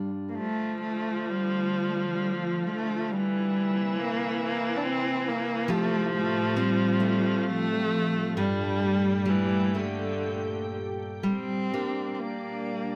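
A dark, expressive bowed cello carries the mournful melody of this haunting Celtic slow air in rubato 3/4 at 60-71 BPM, joined at 0.4 seconds by a biting, clear viola second line, with a woody fingerpicked steel-string guitar and a soft, organ-like pad of sustained chords with ensemble chorus beneath, moving from F6 through Fadd9 and Gmadd9 to Gm at 11.2 seconds in a close, detailed, lightly reverberant sound.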